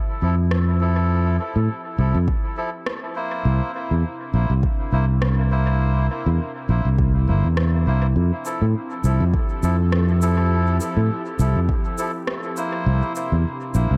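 The recording is soaked in echo and set in a light digital ambience, with the bass and kick up front and a soft pad in the background. This hazy, peaceful piece of ambient dub, cut from a longer work, moves with a gentle swing as its chords shift between Fmaj7 and C7. An airy, breathy pad fades in from the start with detuned, warbling chords wrapped in chorus, while a reedy, nasal melodica plays stabs steeped in dub echo. A growly, punchy fingered electric bass carries the low end with a bright, direct tone. An overdriven electronic rim click and shaker, heard as if from a large room and fed through dub echo, enters at 0.5 seconds, and a deep, overdriven electronic kick plays from 2.3 to 11.8 seconds.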